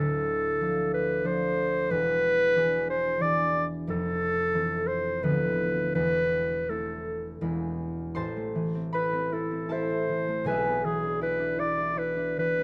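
In a flexible, rubato 3/4 that drifts between 70 and 95 BPM, this romantic classical duo for clarinet and harp unfolds in A minor with an elegiac, solemn mood, tuned to A4 = 441 Hz. The clarinet carries the melody from start to finish in a classical style, its smooth-topped, warm tone sitting up front within a narrow span from G#4 to D5. Beneath it, the concert harp supplies fingerpicked accompaniment across a broad register from D1 to C6, its acoustic strings ringing close beside the soloist. The harmony moves from Dm through E7, Fmaj7 and Bdim/D to Am/E and E, then a new passage begins at 8.2 seconds, settling on Am before turning to E7/B at 10.5 seconds. Light reverb gives the pair a gentle sense of space in this brief fragment cut from a longer piece.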